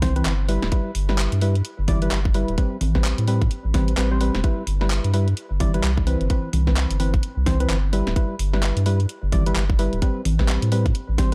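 UK garage two-step cut from a longer piece, soulful and bouncy at 129 BPM in G major with a swung 16th feel, where a deep, thick saturated sub bass sits up front beneath a tight, overdriven electronic kick and a garage kit of congas, handclaps, hi-hat and a cracking snare, while hollow, percussive organ stabs with chorus and delay move through G6, Am9 and Cmaj7 in a dark, warm production.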